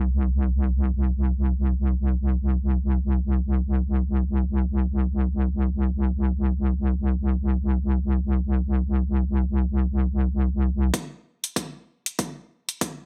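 Swaggering and playful, this glitch hop fragment in free time opens with a heavy, saturated wobble bass playing around C2 until 10.9 seconds. The square-and-sine tone has a fast attack and a mellow, sustained body thickened by chorus and tube saturation. At 10.9 seconds a punchy, layered electronic kick, high-pass filtered, and an up-front electronic hi-hat, both set in studio reverb, drive a short build-up that ends at 13.1 seconds as the clip cuts off, all within a digital ambience.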